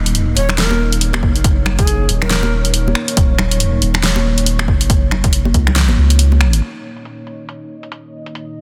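A dense, heavily limited mix with light digital ambience opens this brooding, dark fragment of deep dubstep, its half-time, swung feel carried by a deep, round sub bass held up front and a moody, detuned pad with chorus and built-in reverb sustaining chords through the full 8.6 seconds. A breathy, reedy shakuhachi with vibrato and dub echo sings a short phrase from 0.4 to 2.7 seconds, while bright, high-tuned congas with echo sit in the background. A punchy, overdriven electronic kick joins at 1.2 seconds, adding weight to a layered kit of finger snaps, filtered hi-hat and a fat snare that has been playing since 0.1 seconds, and the sub bass drops out at 6.6 seconds as the music moves into a new section.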